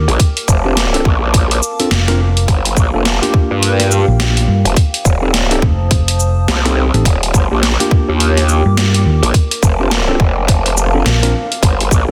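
A growling, wobbling bass with overdrive sits up front alongside a round, hollow-body fingered electric bass and a tight electronic kick, driving this gritty, funky glitch hop cut with swung sixteenths, gritty pitched-down boom bap hi-hat, shaker and high-tuned snare, worn, slightly out-of-tune electric piano stabs with tape echo, and a deep, detuned analog pad with phaser pumping in the background over a Bbmaj7, Gm7, F7, Ebmaj7 progression.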